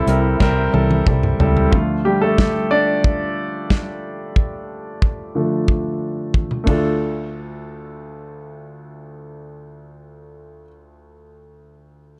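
Dramatic and earnest, this piano-driven pop excerpt opens on a C chord with a breathy trumpet melody, whispered and intimate, with a soft attack, scooped notes and vibrato, set in the background under plate reverb and tape echo before it ends at 1.1 seconds. A polished grand piano, present and up front with its own plate reverb, carries the accompaniment across the whole passage, spanning D2 to D5. A vintage fingered electric bass, foam-muted, amped and round, anchors only the opening and stops at 1.7 seconds. A natural acoustic drum kit sounds close in a small room, with a tight kick, medium-tuned snare, hi-hat, ride, toms and dusky cymbals, and it plays fills in the opening and again just before 7.0 seconds. When the harmony turns to D minor at 1.7 seconds, the piano takes a solo, all within a dark production touched by light reverb.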